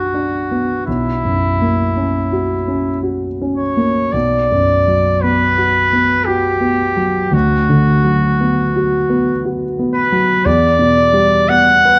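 The rhythm moves in a slow three-beat metre with uneven, freely stretched beats, the pulse bending in a rubato manner throughout this solemn, elegiac passage of romantic classical music. A clear trumpet carries the melody in a classical solo style from 0.0 to 12.0 seconds, sounding up front yet also distant and roomy. Beneath it, a warm grand piano supplies the accompaniment across the same span, its notes placed up front with a short sustain. The harmony settles in a minor mood and drifts through a few chord changes before arriving at a seventh chord near the close. A moderate recital hall reverb surrounds the pair, and the overall production has a dark character, with the passage cut from a longer piece.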